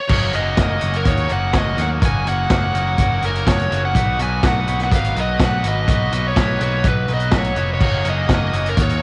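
Carefree and jangly, this indie rock fragment moves at 124 BPM in a straight 4/4, sitting in F# major with a home-recorded cassette character and very little reverb. A biting, overdriven lead guitar carries the melody up front from the very start, joined at 0.1 seconds by the rest of the band. Underneath, a twangy, clean electric guitar plays a riff coloured by lush chorus and tape echo, while a second overdriven guitar holds a warm riff further back in the mix. A growly, bright picked bass and a punchy vintage drum kit with dark cymbals and a rolled-off top drive the groove, and a buzzy combo organ with light vibrato sustains chords at a barely audible level. The harmony moves from F#6 to Bmaj7 at 4.0 seconds and returns to F#6 at 7.8 seconds.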